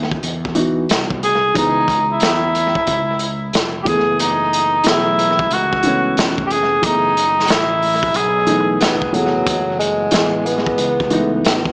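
A dark concert grand piano, its action noise audible, opens this smoky, mellow jazz-hop excerpt at 91 BPM over a round fretless electric bass and a crunchy, saturated breakbeat kit with a tight kick and gritty, rolled-off top, swinging gently through C#m9 and F#m11. At 1.2 seconds a distant, roomy cor anglais takes the melody up front with light vibrato, giving way at 8.8 seconds to a breathy tenor saxophone that plays a second line in subtone with scooped notes. Tape echo colours the piano, drums and both horns, and spring reverb and a small-speaker sound give the echo-heavy mix its hazy intimacy.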